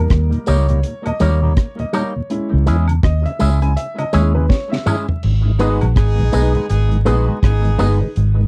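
A laid-back 82 BPM groove in 4/4 with a 16th-note swing sets this short roots reggae cut in G# harmonic minor, its mood serious and unhurried. Up front, a dark, foam-muted fingered electric bass with a round, punchy tone anchors the low end beside a smooth, dry drum kit with a high-tuned snare, tight kick, rim clicks, hi-hat, toms and crash cymbal, plus a drum fill just before the change at 5.2 seconds. A woody, slightly detuned upright piano, its action noise audible, carries a solo of intimate stabs over the opening D# and C#m chords. Beneath it sit a mellow tonewheel organ in the background, with chorus vibrato and tape echo, and a clean, twangy electric guitar through an envelope filter and tape echo, while a quiet tambourine and woodblock add small-room colour. When the harmony settles on G#m, a clear, tight horn section enters at 5.6 seconds with light vibrato and tape echo, and the whole dry, close 1970s-style recording carries a faint vinyl crackle.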